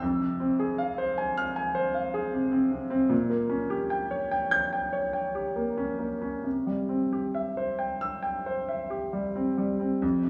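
A clear, up-front concert grand piano opens this passionate, stormy romantic character piece, its deep bass and smooth, vintage tone spanning F2 to G6 with a short sustain, set in a wet recital hall reverb. Played alone in 4/4 with free rubato at 65-79 BPM and tuned to A4 = 444 Hz, the fragment moves from F minor to G diminished over B-flat at 3.1 seconds and arrives on C at 6.4 seconds before it is cut off.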